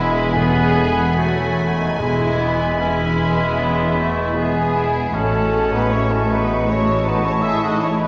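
In this lyrical, tender excerpt from a slow romantic orchestral movement at 73-80 BPM in a rubato 4/4, muted, veiled violin sections play from the start, one carrying the melody over a second violin line, with a hollow flute, bright clarinet and warm oboe weaving their own lines. A mellow bassoon and muted violas accompany, a mellow horn section sustains chords, and dark trumpets add stabs. Muted cellos and a lush, up-front double bass section anchor the bass through Amaj13/E, E and Amaj7, while very quiet timpani sound on E2 from 0.4 to 3.1 s, all heard from further back in a reverberant concert hall.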